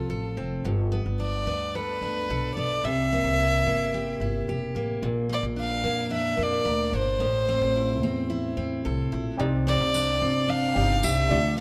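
Heartfelt and sunny, this short excerpt of acoustic pop moves at 110 BPM in a straight 4/4, tuned to A4 = 444 Hz. An intimate, up-front single violin carries the melody, bowed sul tasto with a soft attack, airy bow and light vibrato. Beside it, a full-bodied dreadnought steel-string guitar is picked up front, its finger squeaks audible, while a woody pizzicato upright bass anchors the low end through chords moving from F and Gadd9 to C7, Bb, Am and finally Cmadd9. At 9.4 seconds a worn, slightly detuned upright piano slips in from the background with short, open notes, and a jingly tambourine in a live room joins at 9.9 seconds before dropping out at 11.2 seconds. Light reverb surrounds the players, and lossy compression artefacts colour the sound.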